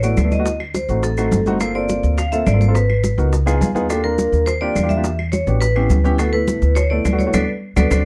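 Sunny and sophisticated, this Afro-Cuban jazz excerpt moves at a brisk 209 BPM in straight 4/4, with a ringing, bright vibraphone carrying the melody, played with medium hard mallets and a slow motor vibrato, over an intimate baby grand piano whose action noise and long sustain colour chords such as D7b9, Ebmaj9 and D69. A woody, thumpy pizzicato upright bass sits up front, while thin-skinned congas, round low-tuned bongos and distant claves in a large room fill the background, joined by close, grainy, dry maracas. A piano fill at 3.3 seconds and a band accent at 7.3 seconds stand out in the dark production with its light reverb.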